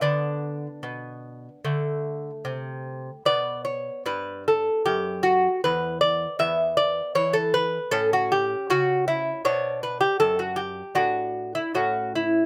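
A bright, delicate solo lute with paired gut strings, some doubled at the octave, opens this radiant, dance-like baroque-style classical excerpt at 76 BPM, its fingerpicked lines sitting up front in a close, detailed, nearly dry recording as the flexible rubato carries the harmony from B minor through D and E toward A.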